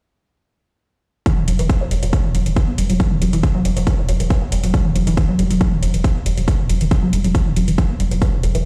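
Heard through a big sound system in a bare stone room, this hypnotic, driving slice of peak-time techno in E minor runs at 138 BPM, with a heavy, up-front kick and metallic, pumping hi-hats arriving at 1.3 seconds, a round, deep sine sub bass holding E1 through tube saturation, a low-pass filter and sidechain pumping, and a juicy, squelchy resonant blip pluck riff between E3 and B3 coloured by phaser, lush chorus, sidechain pumping and tape echo.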